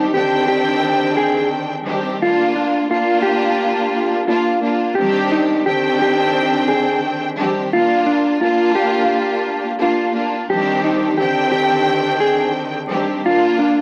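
Reflective yet tough, this hip hop fragment, cut from a longer piece, rides a swung sixteenth-note feel in 4/4. A mellow, dark electric guitar carries the melody with a clean, fingered tone, shaped by high-pass and low-pass filtering and a tape echo. Alongside it, a studio string section supplies the accompaniment, bowed sul tasto with vibrato, a soft attack and a smooth top, sitting close and up front with an intimate, cassette-tinged character. Both parts play together across the whole 13.8 seconds as the harmony alternates between Cmadd9 and Bb. The sound is dry and gritty, like a hardware recording, with vinyl crackle, light reverb and a small room ambience.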